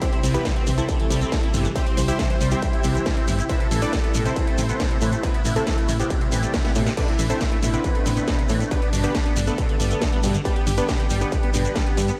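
Up front, a distorted electronic kick drives this euphoric uplifting trance excerpt at 138 BPM alongside a detuned supersaw stab carrying the melody with sidechain pumping and diffuse delay, and a punchy, tube-saturated FM bass enters at 0.2 seconds. A squelchy, resonant acid bass runs arpeggios through chorus and delay, while a dark, shimmering pad holds sustained chords over C, Amadd9 and G, very quiet beneath the rest. A techno kit with cracking snare and hats adds a fill at 6.6 seconds, a grainy shekere sits close and dry in the background, and the dreamy mix is soaked in lush hall reverb.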